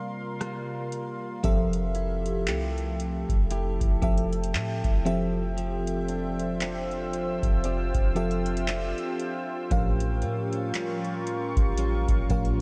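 Contemporary R&B with a late-night, sensual mood and a gentle 16th-note swing, heard in a short cut from a longer piece. An FM electric piano layered with a soft pad sits up front, its lush, detuned tone treated with chorus and phaser, while a clean electric guitar, recorded direct and compressed, picks bright arpeggios through subtle chorus and delay. Alongside them, a deep, moody ambient pad holds slow-attack sawtooth chords with a sub octave, bathed in its own reverb. A booming analog drum machine enters at 0.4 seconds with a deep kick, metallic hats, handclaps and rim clicks, and a soft, round 808-style bass joins at 1.4 seconds as the harmony moves into richer extended chords. The whole mix is dreamy and soaked in a lush hall reverb.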